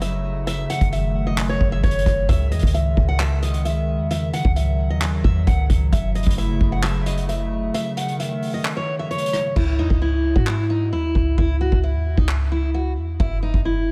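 A picked steel-string acoustic guitar carries a full-bodied melody, softened by a low-pass filter and a diffuse ambient delay, over a hollow, flute-like pad with chorus, a deep, boomy 808-style bass and an up-front vintage drum kit with a punchy kick, dark cymbals, handclaps, hi-hat and rim click, giving this half-time trap excerpt a menacing, eerie mood. The kick drops out at 7.7 seconds and the pad stops at 9.5 seconds, leaving the guitar, bass and drums, with the hi-hats muted, for a sparser closing stretch. The kit sits in a pumping small room, and light reverb gives the mix a small room ambience.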